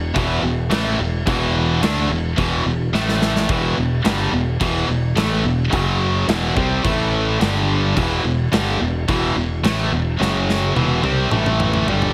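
Hard rock with an aggressive, driving straight feel, this short cut from a longer piece pairs an up-front overdriven electric guitar with a scooped, high-gain distorted guitar, both picking a bright riff over power chords and E minor, while a growly, direct fingered bass holds the low end. A big acoustic rock kit with a punchy kick, medium-tuned snare, crashes and toms joins at 0.2 seconds, throwing in fills at 2.9 seconds and again from 10.2 seconds to the close. The mix sits in light reverb and studio ambience, squeezed into a heavily compressed, radio-style sound.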